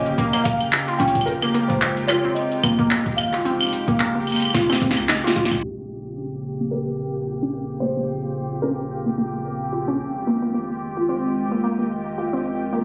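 Swung 16ths at 110 BPM drive this cerebral, intricate IDM fragment in Bb dorian. A punchy, up-front analog drum machine with metallic hats, handclaps, claves and cabasa plays alongside a soft electronic kick until a fill and band accent end both at 5.6 seconds. From there a filter sweep moves across the nasal, dusty pluck arpeggios, which carry on over a warbling, detuned tape-like pad, a pulsing gated texture with sidechain pumping, a round sine sub bass and a thick-felt upright piano melody with audible action noise and delay, all bathed in lush hall reverb through a muffled, phone-in-the-room sound.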